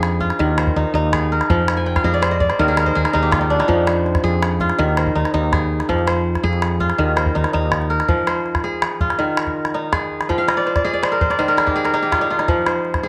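West African traditional string and xylophone music in a flowing, reflective 12/8 feel, heard here as a short cut from a longer piece, with ringing, crisp fingerpicked kora arpeggios up front, touched with tape echo and breaking into fills around 1.8 and 10.3 seconds. A dark, round woody fretless electric bass sits close beside it until about 8.0 seconds, while a small calabash keeps time in a live room. Moderate echo chamber reverb and small room ambience frame the sound as harmonies built around F minor shift through the passage.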